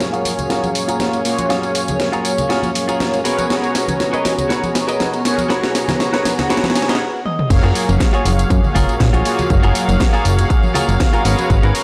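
Nu-disco with a groovy, sleek feel and a light swing on the sixteenths, cut from a longer piece. A mellow synth brass sits up front from the start, brassy, round and dark with chorus, vibrato and an analog delay, over a gut-string violin section holding reedy, bowed chords in the background with sidechain pumping. A house drum kit with a cracking snare, hi-hat, crash, toms and tambourine drives the build-up alongside bright, close congas and tambourine in the background, while a clean, picked electric guitar, recorded direct and compressed, plays a riff that carries a filter sweep through the build. The guitar plays a fill from 6.5 seconds, and a short break at 7.0 seconds gives way to the drop at 7.5 seconds. There a fat, detuned sawtooth bass with tube saturation enters up front alongside a punchy, tape-warm electronic kick, as the harmony moves between major-ninth and minor-eleventh chords. 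The mix has light reverb and a dry, gritty hardware character with transformer saturation.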